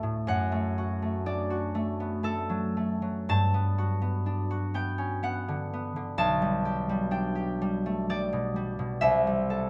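A concert harp opens this brief classical fragment, plucked by the fingers and sitting up front with a ringing, acoustic tone. The mood is serene and dreamy, moving at a slow 62 BPM in 3/4 with a rubato feel that lets the pulse breathe. The harp spans a range from deep B1 up to A5, and light reverb gives it a soft halo. The harmony drifts from D/F# through Gmaj7 and G/B before settling on Am7/C near 9.0 seconds. Tuned to A4 = 441 Hz, the passage lasts 9.7 seconds and is cut from a longer piece.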